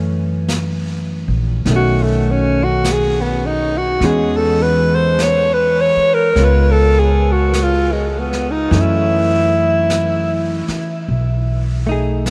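A breathy alto saxophone carries the melody up front from 1.8 s, its clear jazz tone shaded with light vibrato and a soft attack, in this tender, romantic jazz ballad excerpt at a slow 51 BPM with a swung feel. Beneath it, a dark, clean hollow-body electric guitar plays fingered, compressed accompaniment over chords such as F#m7, B9 and E69, while a woody pizzicato upright bass sits up front. A smooth, rolled-off vintage brush kit adds brushed snare and hi-hat from 0.5 s, and a huge ambient reverb places the group in a vast, echoing space.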